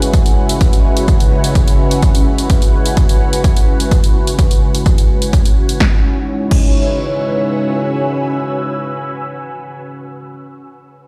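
A punchy, up-front kick drives a straight 4/4 melodic techno groove at 127 BPM in C# minor, with a tape-warm house kit of snare, hats and crash riding beside it until both drums stop at 6.7 s. Beneath them a deep, detuned sawtooth pad sustains dark chords that shift from Eadd9/C# to C#madd9 at 5.8 s. A low, evolving C#3 drone hums in the background, and a high, ethereal airy pad with ensemble chorus and phaser floats on top, all three pumping against the kick. The driving, melancholic cut sounds as if played on a big sound system in a bare stone room.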